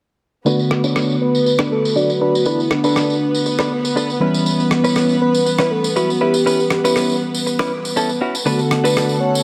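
At 0.5 seconds a groovy, cosmic nu-disco passage opens all at once: a clean tine electric piano heard through its built-in speakers, a chamber string section bowing sustained chords with a reedy gut-string tone and light vibrato, and a tambourine with rim click, dry and acoustic with a rolled-off top. Alongside them, a direct-recorded clean electric guitar plays a picked, compressed riff dressed in lush chorus and a low-pass filter, with a filter sweep running across its whole length. At 1.2 seconds a soft, octave-layered synth lead takes the melody, its round, dark tone built from triangle and sine with a sub octave, a fast attack, vibrato, chorus and tape echo. The harmony moves from Bm7 to C#m7b5 at 4.2 seconds and returns to Bm7 at 8.5 seconds, giving the straight four-four pulse a drifting, starlit quality. A moderate, lush hall reverb surrounds the ensemble, and this warm passage is cut from a longer piece.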